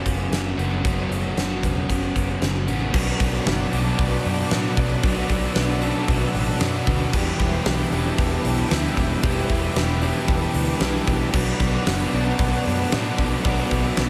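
Picked guitars open this dreamy, melancholic shoegaze and dream pop fragment together: a lo-fi, slightly broken-up arpeggio part with subtle chorus and slapback echo in the background, an overdriven riff trailed by reverse reverb, and a thick fuzz riff with ensemble chorus beneath, all over a dark, round, foam-muted bass and a huge arena kit up front with a fat snare, punchy kick and bright cymbals, and then a lush, warbling, detuned sawtooth pad joins with sustained chords at 2.9 seconds as the harmony moves from F#sus4 to Bm.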